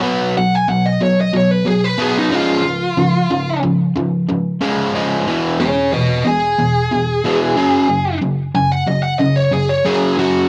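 A bluesy lead electric guitar takes a solo up front, warm and distorted, coming in at 0.4 seconds and running through to the end at 10.5 seconds in a high register. Beneath it, a crunchy, bright overdriven electric guitar plays a picked riff in the low range, double-tracked and also placed up front from the very start. The piece is swaggering, confident rock in a straight 4/4, moving through B5, C#, E and F#5 chords. The sound is a dry, close 1970s-style studio recording with light reverb. This short clip is cut from a longer piece and stays in a single section throughout.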